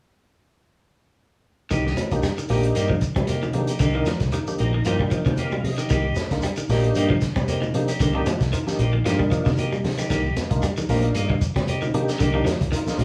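Defiant and hypnotic, this afrobeat excerpt in C minor grooves at 114 BPM with a light sixteenth-note swing over a single Cm7 chord, as a gritty, saturated breakbeat kit with a punchy kick and high-tuned snare, a round fingered electric bass, distant bright congas, a grainy close shekere, a slightly broken-up guitar playing arpeggios and a clean guitar jabbing stabs all enter at 1.7 seconds, joined at 2.1 seconds by a percussive tonewheel organ with key click, chorus vibrato and a slow rotary speaker that adds a fill around 4.3 seconds before a drum fill at 9.4 seconds, all in a small stone room with a live-band feel.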